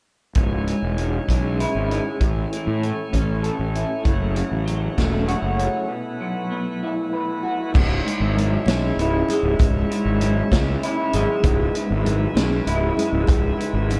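A vintage drum kit opens at 0.3 s with dark cymbals, a punchy kick and a medium-tuned snare, joined almost at once by the rest of the band in this dark, trippy psychedelic rock excerpt, moving slowly at 65 BPM in a straight 6/8 in C# minor. An electric guitar through a small old amp plays a double-tracked, slightly broken-up riff with harmonic tremolo, while a fuzz-soaked fingered bass sits low and round beneath it, both placed up front with the drums. Behind them, a reedy tonewheel organ holds sustained chords through a slow rotary speaker, its key click audible at a lower level. The chords move from C#m through Amaj7 and F#m7 to a B7sus4 break, before returning to C#m as a new section begins. Very quiet, thin-skinned congas played with soft hands enter at 7.7 s, and the whole dreamy mix is steeped in a lush hall reverb.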